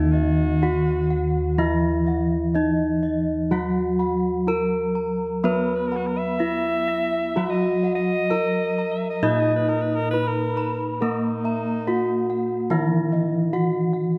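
A hypnotic, stately gamelan passage in Eb pelog at 62-76 BPM opens with a dry, up-front bronze metallophone carrying the melody under wooden mallets, joined at once by a bright alto saxophone with vibrato and tape echo on a second line until 12.5 seconds, while a lower metallophone struck with horn mallets gives dark, shimmering accompaniment, round bossed gongs play arpeggios in a boxy small room alongside a high ringing metallophone with its own tape echo, and smooth background gongs hold the bass, all under light reverb.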